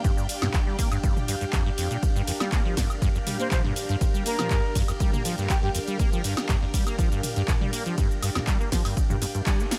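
A rubbery, resonant acid bass riff drives this raw, gritty acid house excerpt at 121 BPM in G minor, its dark sawtooth tone saturated with tube warmth, analog chorus, cassette grit and tape echo, with a filter sweep over fast-attack, decaying notes. Up front, a punchy electronic kick anchors the straight 4/4 pulse, while an analog drum machine adds punchy snare, handclaps, hi-hat, ride, shaker, toms and woodblock, with a short room on the snare, clap and hats. Behind them, a lush, vintage string machine holds sustained chords with a sub octave, phaser and ensemble chorus, pumping against the kick alongside a breathy, detuned pad with a noise layer and slow attack. A reedy flute with vibrato and rolled-off highs plays a brief melody from 3.4 to 5.7 seconds, trailed by tape echo. The dry mix closes on a band accent at 9.5 seconds.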